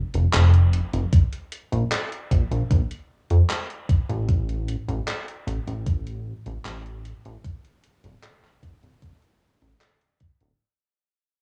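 Faded and nostalgic, this short vaporwave excerpt at 76 BPM sets a glossy, nasal chorused synth bass up front with tube saturation, joined at 1.1 seconds by a thumpy, overdriven electronic kick and carried by handclaps and hi-hat from a gated 80s digital drum machine with gated reverb, all over a cassette-tinged home recording with little reverb that fades out across its full 10.6 seconds.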